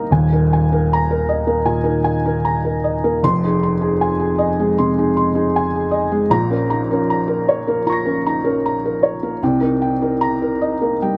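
A close, dry, detailed sound frames a felt-muted upright piano playing alone, its soft, dark and boxy tone sitting up front in this wistful, intimate neoclassical minimalist fragment in F minor, cut from a longer piece, moving with rubato at around 77 BPM in 4/4 through Ebsus4, Fm7, Bbm and Cm7 across a range from Eb1 to Bb6 over 11.2 seconds.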